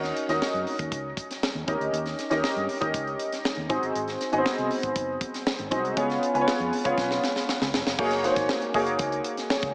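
Heard through a small-speaker sound with light reverb and a small room's ambience, this short clip cut from a longer piece is polished 1980s jazz-funk pop in F# major, moving at 119 BPM in a straight 4/4 with an upbeat, urban mood. A grand piano sits up front as accompaniment, its tone warm and intimate, with audible action noise and an analog chorus. Beneath it, a vintage muted fingered electric bass plays low and round, dark and amped with a foam-muted tone. A tight funk drum kit, acoustic and dry apart from its gated reverb, features bright cymbals, a high-tuned snare, a tight kick and hi-hat, and sits up front in the mix. The harmony travels through D#m7, D#7, G#7 and C#7, and a drum fill from 7.0 seconds leads into a new section at 8.0 seconds that settles on F#69.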